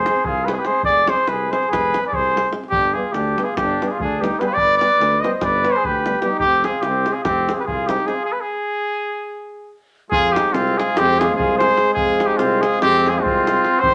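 Virtuosic and restless, this Balkan brass band fragment in 9/8 sets a close-miked, soft-attacked cornet melody up front over a distant flugelhorn second line with light vibrato, while a vintage-toned euphonium and a smooth-topped trombone sit in the background, a mellow tuba holds the bass and a deep, dry davul drives the percussion, the brass all in a classical style within a wet studio reverb, with a stop from 8.3 to 10.1 seconds before the final section.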